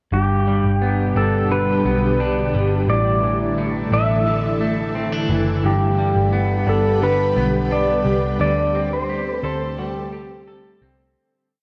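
Floating and ethereal, this short dream pop piece drifts from G through Asus4 and back before settling on D7sus4. A bright, clean lap steel guitar carries the up-front, motif-based melody with slide and volume swells, trailed by tape echo. Beneath it, a slightly broken-up electric guitar plays a twangy fingerpicked roll pattern, shimmering with lush chorus and its own tape echo, while a dark, round, foam-muted electric bass holds down sustained low notes. An airy pad of detuned sawtooth, triangle and sine tones with a sub octave enters at 0.8 s, its slow attack and long release softened by ensemble chorus, tremolo and built-in reverb. The mix sits in a huge ambient reverb and carries the warble and pitch drift of worn cassette tape, fading out from 8.4 s to the close at 11.2 s.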